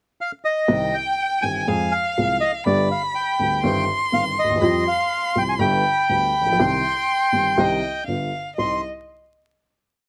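A reedy, bright bandoneon opens this sultry, melancholic tango at 0.2 s with a motif-based melody in sentence-like phrases, and from 0.7 s a bowed violin with vibrato and portamento adds an expressive counter-melody while a dark, woody upright piano plays a milonga rhythm in C harmonic minor at a rubato 122 BPM, all heard close and detailed in light reverb with vinyl crackle before the piece settles on a final C minor chord at 8.6 s.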